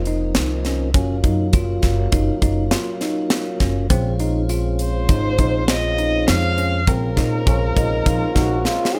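In a driving, straight 5/4 at 101 BPM in Bb minor, this tense progressive instrumental excerpt sets a tight, polished drum kit with a high-tuned snare and a woody pizzicato upright bass under a mellow organ on slow rotary speaker, bell-like electric piano arpeggios and a very quiet grainy tube shaker, with a shadowy bowed violin taking the melody at 4.8 seconds, a growling trombone adding a second line at 7.5 seconds, and a drum fill at 8.7 seconds, all in light reverb.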